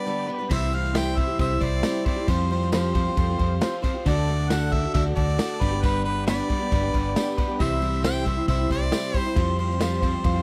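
A dry, close 1970s-style studio sound frames this hopeful, jangly folk and heartland rock passage in C major at 136 BPM, cut from a longer piece, where a breathy harmonica with light vibrato and scooped notes carries the melody over a bright, picked steel-string acoustic guitar and a clean, compressed electric guitar riff bathed in spring reverb. At 0.5 seconds a round, punchy hollow-body electric bass and an airy, polished country drum kit with crash, kick and snare enter. A very quiet tonewheel organ with key click and rotary speaker, a dark, woody upright piano that adds a fill at 6.7 seconds, and a distant, jingly tambourine fill in the background over chords moving from C through Fsus2 and D to G.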